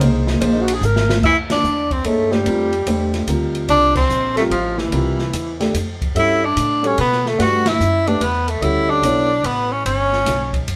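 Hypnotic and spiritual, this short modal jazz excerpt swings in 3/4 at 146 BPM in F major, opening with a breathy alto saxophone solo and a drum fill before a forceful, clear tenor saxophone takes the melody with scooped notes and vibrato, the alto sitting in the background as a second line over a dark, mellow grand piano, a woody, growly upright bass and a boomy, dark-cymbaled drum kit, all played live in a stone room with band accents at 1.4, 3.9 and 7.6 seconds.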